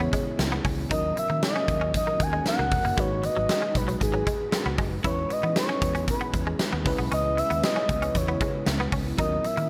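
A straight 4/4 groove from a huge arena drum kit, entering at 0.1 s with a fat, gated-reverb snare and punchy kick up front, drives this uplifting, nostalgic slice of 1980s-style pop, over a round, foam-muted fingered electric bass. A glassy, bell-like FM electric piano and a twangy, direct-recorded clean guitar riff with analog chorus fill out the middle, while an ethereal, airy pad holds sustained chords in the background. On top, a smooth, expressive sawtooth synth lead carries the melody with vibrato, chorus and tape echo over minor-seventh and sixth harmonies in a light small-room ambience.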